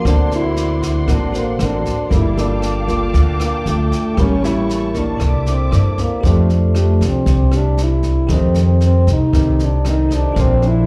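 This sounds like a live club gig heard through the venue's PA, with a light club reverb around the band. It is a sunny, relaxed bossa nova cut from a longer piece, in straight 4/4 at 116 BPM, starting in D minor and moving to F major at 6.2 s. A mellow French horn carries the melody in a classical style with light vibrato and a slapback echo. Beneath it, a thumb-plucked nylon-string guitar and a bell-like tine electric piano in the background share the accompaniment, both with the same echo, and the piano plays a short fill from 5.5 s. A veiled, muted symphonic string section holds lush bowed chords high above until 6.2 s, while an up-front, woody pizzicato upright bass and a brushed drum kit with a boomy kick, rim clicks and snare keep the groove. The harmony is rich in jazz colour, moving from D7b13 through Gm9 and A7b9 to C13, then settling on F69 and F7.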